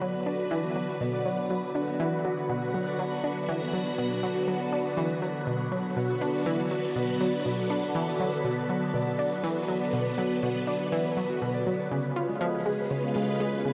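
A wet plate reverb with a long tail bathes this short excerpt of ambient, sequencer-driven space music, which moves at 121 BPM in a straight 4/4 and sits in B dorian with an expansive, mysterious mood. Up front, an analog pluck plays a riff with a round, detuned sawtooth tone, a fast attack and decaying notes, thickened by chorus and delay. Beside it, a phased string machine holds sustained chords with a swirling, vintage character, its slow attack and long release colored by ensemble chorus, phaser and shimmer reverb. A thumb-plucked concert harp rings out bright acoustic arpeggios through delay and shimmer. From 2.1 seconds a twinkling granular texture fades in, sparkling in the background on a single high B with an octave-up shimmer, while the harmony rests on B minor before shifting to C#7 at 11.9 seconds.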